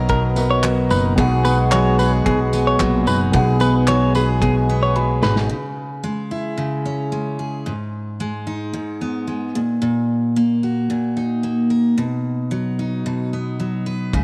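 A bright, full-bodied acoustic guitar sits up front in this easy-going, heartfelt acoustic pop excerpt, picked throughout at 111 BPM in B major and carrying on alone after the rest of the band drops out at 5.5 seconds. For those opening seconds it is joined by a reedy, breathing pedal harmonium holding sustained chords, a very quiet dark upright piano with a short sustain, and a compressed, direct-recorded clean electric guitar playing arpeggios. Underneath, a woody, growly pizzicato upright bass and a natural country drum kit with a punchy kick, medium-tuned snare, handclaps and tambourine set an unhurried straight feel. A drum fill and a piano fill lead out of the opening passage, where the harmony moves from Bmaj7 to G#m7. The guitar then works through C#m, G#m and D#m/A# before resolving to B, with bass and drums returning briefly at 14.1 seconds. Light reverb and a small-room ambience surround the recording.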